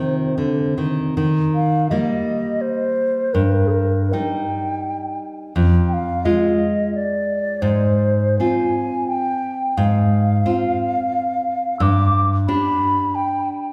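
A romantic duo for flute and classical guitar in Eb major, this melancholic, elegiac piece moves in a rubato 3/4 at 72-90 BPM, cut from a longer work. A pure, wooden-toned flute sings the melody with vibrato and tongued notes, close-miked and up front, while the deep, fingerpicked nylon-string guitar supplies the accompaniment through to 13.7 seconds. Wet recital hall reverb lends a sense of distance as the harmony drifts from Cm through Eb and Fm before settling on G at 11.8 seconds.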